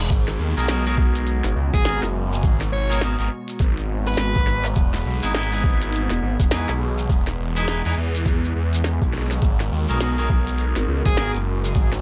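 A swung 16th-note groove drives this gritty, swaggering glitch hop excerpt, built on a thumpy, pitched-down kick up front, a glitchy electronic kit of tiny snare, clicky hats and crash, and a close, grainy shekere, while a swirling, thick phased saw bass sits beneath a warbling, nostalgic lo-fi pad with sidechain pumping, clean twangy guitar stabs with dub echo, and a dark overdriven lead guitar melody from 1.7 to 4.7 seconds and again briefly at 11.1 seconds, moving over G#m9 and Emaj7 chords in a dry mix.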